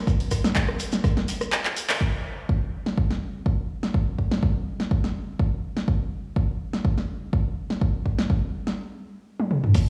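An overdriven electronic kick drum sits up front in this raw, trippy house excerpt at 124 BPM in 4/4, with a gentle 16th-note swing. A punchy analog drum machine, also overdriven and dry, enters at 0.2 seconds and carries through with crash cymbal, handclaps, hi-hat, rim click, snare and toms. In the background, a dark, gritty breakbeat kit with a high-tuned snare adds saturated hi-hat and snare during the opening two seconds, its hats pumping, while a grainy, mellow shekere shares that stretch and both return briefly at the close. The kick drops out from 1.5 to 2.0 seconds as a drum fill leads into a band accent at 1.9, and another fill arrives at 9.4 seconds. The mix is dry up front yet carries studio reverb and the character of a big sound system played in a bare room.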